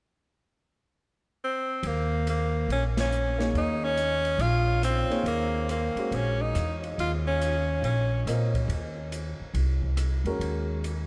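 Bathed in the long tail of a vast, echoing cathedral space, this hypnotic, searching modal jazz fragment in Eb dorian swings at 140 BPM, as an edgy, punchy tenor saxophone enters at 1.4 seconds with forceful, scooped notes up front, joined at 1.8 seconds by a woody pizzicato upright bass and an airy, polished drum kit with dark cymbals and a boomy kick, before the band strikes an accent at 2.9 seconds and a warm, present grand piano takes up the accompaniment.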